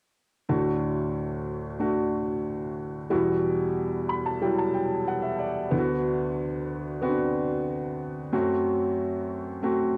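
Pop in a dramatic, bittersweet mood at 92 BPM in 4/4 with a straight feel, this excerpt from a longer piece is carried by a warm baby grand piano playing accompaniment from 0.5 to 10.0 s, ranging from D2 to B5 with an open, long-sustaining tone placed up front and a cassette tape colour. The piano adds a fill from 3.8 to 5.7 s as the chords move from D through Emadd9 and Bm/D to F#dim. The sound is a home cassette recording set in a wet studio reverb, tuned to A4 = 444 Hz.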